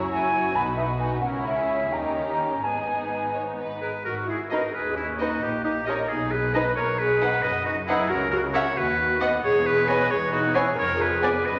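A bright, close-miked oboe carries a solo second line from 3.8 seconds to the close, its vibrato sitting up front in this cheerful, spirited classical-period movement for symphony orchestra. Before it, an airy concert flute with a straight tone and soft attack holds that role from 0.1 to 3.3 seconds. Beneath them, muted violin sections play con sordino throughout, one carrying the veiled melody far in the background while the other adds a smoothly topped second line. A close viola section supplies lush accompaniment, and cellos and double basses share a dark bowed bass. The flowing 6/8 lilt bends with rubato, and the whole passage, cut from a longer piece, sits in the soft glow of a scoring-stage reverb.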